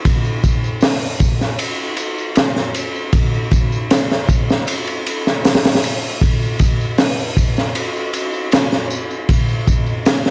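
A dark, vinyl-crackled production bathed in studio reverb sets a hypnotic, smoky trip hop mood, driven by an up-front, saturated breakbeat kit with a punchy kick, high-tuned snare, hi-hat and ride cymbal under a rolled-off top, while tambourine and triangle, joined by egg shaker and group handclaps, sit quietly in the background of a small room, all cut from a longer piece.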